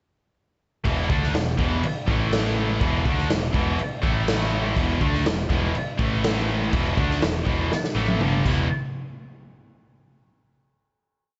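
A gritty, saturated garage drum kit sits up front with a punchy kick, a medium-tuned snare and a rolled-off top, driving a menacing, heavy hard rock piece in E minor at 122 BPM that opens at 0.8 seconds. Two double-tracked, picked electric guitars, one overdriven and one scooped and high-gain, play a power-chord riff that alternates between E5 and A5 before landing on E minor. A round, hollow-body fingered bass doubles the riff in driving eighth notes, and a drum fill at 7.7 seconds leads into a final hit at 8.7 seconds, all set in light small-room reverb.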